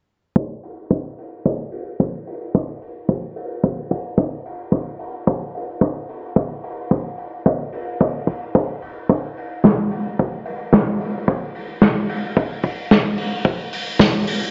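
A straight 4/4 groove at 110 BPM drives this sunny, feel-good nu-disco excerpt, cut from a longer piece. A punchy acoustic kick drum sits up front from 0.4 seconds, played with bundle sticks in a studio room and shaped by high-pass filtering on its kick, snare and room signals. At 0.6 seconds an unplugged drum kit joins with hi-hat and a medium-tuned snare, also played with bundle sticks and placed up front. A moderate plate reverb lends the drums a lingering tail, while a low-pass filter caps the top end at 7.8 kHz for a softened, rounded sheen. A filter sweep runs across the whole passage, giving the stripped-back percussion a sense of movement until it ends at 14.5 seconds.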